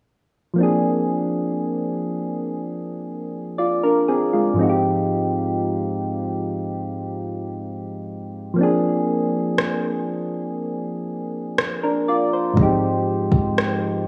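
Contemporary R&B at a slow 60 BPM in 4/4 with a straight feel, this short section cut from a longer piece carries a sensual, late-night mood, tuned slightly low at A4 = 439 Hz. Soft electric-piano-like synth keys open the passage at 0.5 seconds and carry the accompaniment, their round, mellow tone blending triangle and sine colours with a fast attack, a decaying tail, a filter sweep and a gentle chorus shimmer. The harmony alternates between Bb9 and Fm9/Ab, each chord held for about four seconds, with the keys spanning Ab2 to D5. A smooth, electronic R&B drum kit joins at 9.6 seconds with a soft kick and rim click, its produced, tape-warm character re-recorded in a large room and placed up front until it drops out at 13.8 seconds. A moderate, lush hall reverb with a 2.1-second decay surrounds the whole recording, giving it a spacious glow.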